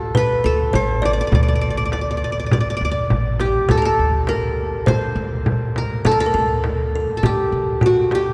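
Passionate and stately, this short cut from a longer Arabic maqam ensemble piece moves at 102 BPM in 4/4 from D maqam rast to D maqam hijaz at 3.7 s, with a bright-edged qanun carrying the melody up front with fingerpicks, a woody, ringing kalimba plucked with the thumbnail as a second line, a pizzicato upright bass adding thumpy low notes, and a small frame drum struck with soft hands sounding close and dry, all set in a church or concert hall with a long cathedral reverb.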